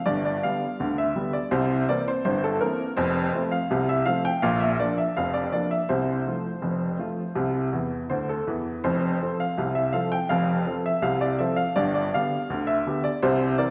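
Ragtime piano in a lively, jaunty 2/4, played by a single upright piano whose woody, slightly detuned tone sits up front with long sustain, ranging from deep bass notes to the upper middle of the keyboard. A short fill at 7.7 seconds punctuates the chord changes. The sound carries the lush reverb of a church or concert hall, with vinyl crackle adding an old-record patina to this fragment cut from a longer piece.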